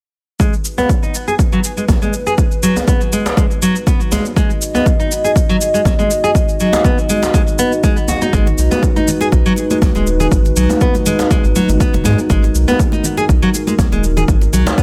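Hypnotic and spiritual, this afro house excerpt rides a single G#m7 chord as a punchy, overdriven electronic kick sits up front and an up-front, bright nylon-string guitar's fingerpicked arpeggios, filtered and tape-echoed, pump along with a moody, detuned analog pad, while cabasa plays and a distant, rattling djembe sits in the background. A round, deep analog bass enters at 8.3 seconds, followed at 8.5 seconds by close, dry congas played with hard hands.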